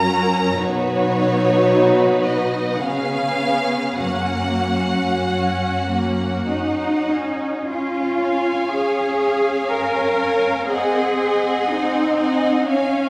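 A rich, expressive violin section carries the melody up front in this slow, lyrical classical movement for string orchestra, moving in a rubato 3/4 at roughly 48-62 BPM. Beneath it, a second violin section sings a smooth, even line, while a distant viola section fills in the accompaniment with vibrato and portamento. A focused, close cello section anchors the bass and sits slightly louder than the upper strings. All four sections play throughout the 13.1 seconds, which are cut from a longer piece. The harmony opens in F# major, then shifts to Db major at 7.7 seconds, with tuning set to A4 = 437 Hz. A 1.6-second recital-hall reverb gives the ensemble a warm, lush glow.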